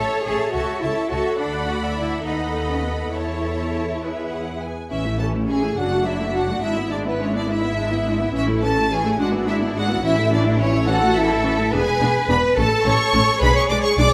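Lively and graceful, this quick classical-period movement for string orchestra moves in 6/8 and is taken from a longer piece. A clear, intense violin section carries the melody from a distant position, while a second violin section adds a rich, focused line beneath it. Violas supply bowed accompaniment, and a smooth, even cello section sits close alongside the double basses, which stand up front in the bass register. Every section plays with vibrato and a lush ensemble tone throughout, set in a moderate recital-hall reverb. A brief opening phrase gives way to a new section at 4.9 seconds, with the harmony moving through simple progressions before closing on a diminished chord.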